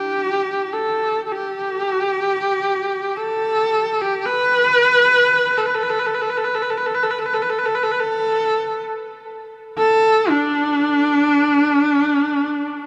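A single horsehead fiddle carries this short cut from a longer piece of Mongolian folk music, playing alone for its full 12.9 seconds. The bowed horsehair strings have a clear, focused tone with a husky grain, and the line moves between D4 and B4 with vibrato and portamento colouring the notes. The fiddle sits up front, yet it also carries a distant quality. A huge ambient reverb, with a decay of about 6.0 seconds, casts a long halo around the one player and lends the dark production a sense of open space. The mood feels vast and galloping, evoking a broad landscape through a single voice.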